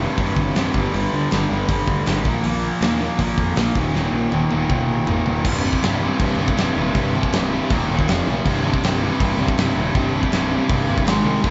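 An overdriven semi-hollow guitar sits in the background beneath a bright, tight distorted guitar up front, both picking a C minor riff alongside a growly fuzz bass, with a big acoustic kit joining at 0.2 seconds, its fat snare and punchy kick mid-forward and rolled-off on top. This urgent, raw punk rock excerpt drives at 160 BPM in straight 4/4, moving through power chords on C, G, Bb and Eb before a drum fill from 3.9 to 5.5 seconds leads into a second section that adds F and Ab. The band sounds like it is playing live together in one room, with moderate studio reverb and a dark, capped top end.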